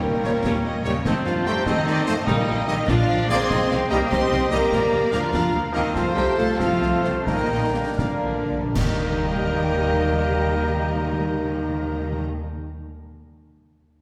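Heroic and soaring, this cinematic adventure-score passage in 6/8 sets a lush violin-section melody and a second violin line over clear clarinet, airy flute and distant oboe, with expressive violas and cellos, intense double basses, mellow French horns, bright trumpet stabs and trombone chords, concert snare, bass drum and cymbals, and calf-head timpani, inside a reverberant hall as the music slows from 5.3 s, a timpani fill arrives at 8.0 s and a dark cymbal-and-bass-drum accent lands at 8.8 s.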